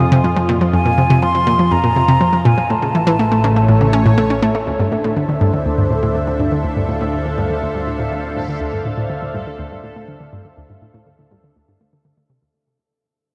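A mellow, hollow concert flute with airy vibrato carries the opening melody over a lush, thick unison pad, a bright up-front analog pluck riff and an evolving sawtooth drone, all set in a vast, echoing space, in this cosmic, mysterious stretch of sequencer-driven ambient space music at 122 BPM, cut from a longer piece. The flute drops out at 4.2 seconds as the harmony settles into D minor, and from 5.2 seconds a bubbling, resonant stepped-filter texture sits in the background. A filter sweep moves across the pluck riff while the drone and the whole passage fade out toward 12.5 seconds.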